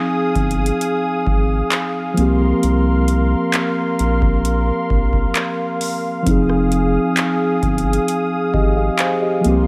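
A mellow tine electric piano sits up front in this moody, longing contemporary R&B clip, moving from Fm7 to C7sus4 and back over a smooth, warbling, detuned analog pad washed in chorus, while a thick, saturated sub bass and a booming analog drum machine with a deep kick, metallic hi-hat, handclaps and rim click enter at 0.4 seconds, the whole clip set in a digital ambience.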